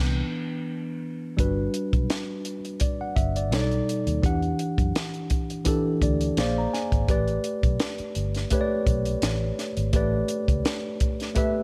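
Light reverb and a small-room ambience frame this cut from a longer piece of lush, smooth 1970s-style soul, which opens on a band accent and a brief solo from a worn, slightly out-of-tune tine electric piano, mellow and direct at the front of the mix, with a dark, foam-muted, round fingered electric bass underneath. At 1.4 seconds a compact cocktail drum kit arrives, dry and up front with a high-tuned snare, punchy kick and hi-hat, settling into a gently swung 16th-note feel. The chords move from Cmaj9 through Gmaj7, B7alt and Em9, and the electric piano adds a fill from 5.7 seconds that carries across the harmony's shift to Bb9 before it moves to A9sus4.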